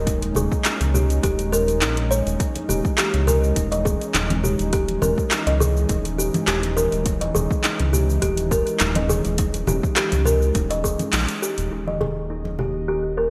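Organic downtempo with a hypnotic, gently swung feel, built on a smooth, detuned analog pad with chorus and a dark, round bass, both pumping under sidechain, while a woody, hollow kalimba plucks mellow arpeggios through a low-pass filter and digital delay. An overdriven electronic kick with a deep thump and an up-front deep house kit of metallic hi-hats, handclaps and shaker, bathed in gated reverb, drive the groove, with faint acoustic congas tucked far back. The kick drops out at 11.0 seconds, a band accent lands at 11.1 seconds, and the kit falls away at 11.7 seconds, leaving the pad, bass, kalimba and congas in a lush hall, all with a bright 1980s-style digital sheen.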